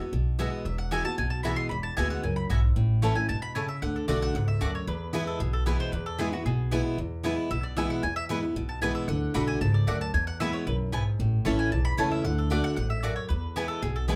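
Lively and joyful, this fast bluegrass excerpt at 228 BPM in E mixolydian has a bright, full-bodied picked steel-string acoustic guitar up front, with a woody, thumpy pizzicato upright bass underneath from 0.1 seconds. Two picked mandolins join almost at once: one adds round stabs from 0.4 seconds, and the other carries the melody from 0.7 seconds. The band plays live together in a small room with a wet reverb, and the chords move from Eadd9 through A, D and E, a fragment cut from a longer piece.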